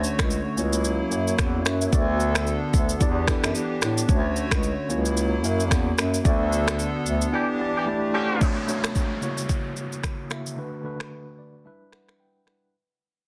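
Afrobeats at 111 BPM with a swung sixteenth feel, sunny and joyful, this piece cycles through Dmaj7, F#7/C#, Bm7/D and Em7. An electronic drum kit with deep kick, finger snaps, rim click and shaker sits up front with soft clipping on the snare, while a mellow bass clarinet carries the bass line in a jazzy style with light vibrato and scooped notes. A clean tine electric piano plays alongside a hollow, flute-like pad treated with chorus, and during a band accent a punchy, vintage horn section with digital delay enters at 7.3 s, before a downlifter marks the fade-out from 8.4 s and the electric piano adds a fill at 11.1 s, all in a dense, heavily limited master.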